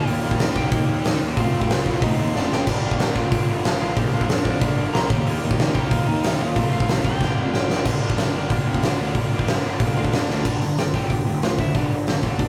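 A rough rehearsal-room recording with light reverb captures a raw, aggressive punk rock fragment in G minor at 185 BPM, where an up-front big rock drum kit with a fat snare, punchy kick and fills in a bright stone room drives a tight, double-tracked distorted guitar riff and a growly fuzz bass sitting in the background, while a twangy, slightly broken-up lead guitar with tape echo carries the melody until 7.7 seconds, returns at 10.0 seconds, and joins the closing turn to a G5 chord at 10.5 seconds.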